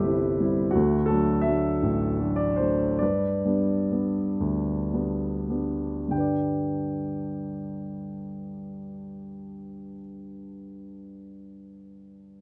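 A dark, mellow baby grand piano with a vintage character and long sustain sits up front in this tender, lyrical classical solo fragment in G major and 6/8, drifting in a rubato pulse of 31-58 BPM across a range from G1 to G5 and moving through C, D and G chords while slowing from 0.7 to 6.1 seconds before a new section begins, all captured by close, detailed microphones with light reverb.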